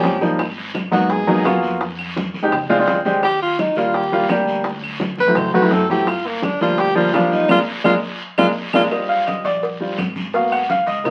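A lively, sophisticated Afro-Cuban jazz groove runs at a straight 169 BPM in 4/4, driven by background percussion: thick-skinned congas played with hard hands, round low-tuned bongos and cowbell, distant woody claves and a raspy guiro, all over a thumpy pizzicato upright bass. Up front, a breathy tenor saxophone with vibrato and subtone solos over jazz changes, with polished upright piano accompaniment, until a band accent at 7.5 seconds and a drum fill lead to an upright piano solo at 8.9 seconds. Moderate studio reverb and the crackle of a very old 78 rpm record give this excerpt, cut from a longer piece, its vintage sound.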